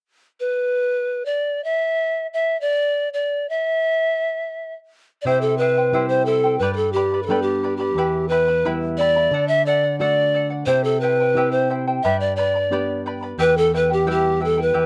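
Recorded dry in the open air, this earthy, wistful Andean folk fragment in 2/4 opens at 0.4 s with a lone, up-front bamboo pan flute, airy and bright with vibrato, tongued notes and audible chiff, before a shimmering fingerpicked charango with double strings and a dark, full-bodied nylon-string guitar in a deep classical style join at 5.3 s, sounding chords of C, G, Em and D beneath the expressive melody.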